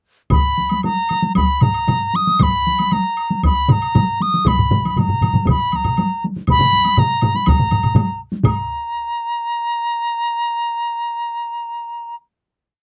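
A close, dry studio sound with light reverb frames this short, ceremonial and powerful Japanese traditional taiko piece in 4/4, which speeds up from 114 to 134 BPM. Four taiko ensemble parts play repeating patterns and taiko phrases with heavy and hard sticks: one is compressed and saturated, one sits in the background, and two sound as if in a small room. A woody woodblock repeats a pattern in the background, while an up-front hollow piccolo carries a pure, tongued modal melody with ornaments and vibrato, holding a final note alone after the drums and woodblock stop near 8.9 seconds, until 12.2 seconds.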